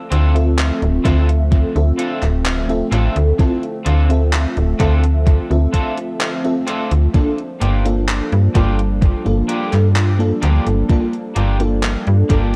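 A dry, echo-heavy mix with a cassette-tape haze gives this short vaporwave excerpt a woozy, melancholic mood at a slow 64 BPM in straight 4/4, set in G dorian. A warbling, nostalgic pad of detuned square, triangle and sawtooth tones holds sustained chords in the background, softened by chorus, phaser and its own built-in reverb, while a lush, dark FM electric piano with a soft pad layer carries the accompaniment through ensemble chorus, tape echo and a cassette treatment. A bright, twangy electric guitar, picked and slightly broken-up, plays a riff through analog chorus and tape echo. Up front, a snappy FM bass with a metallic attack anchors the low end, joined from 1.0 s by a thumpy, overdriven electronic kick. A gated 80s drum machine adds handclaps and hi-hat with gated reverb, overdrive and tape echo, and the harmony moves from Dm7 to Gm7 at 7.1 s.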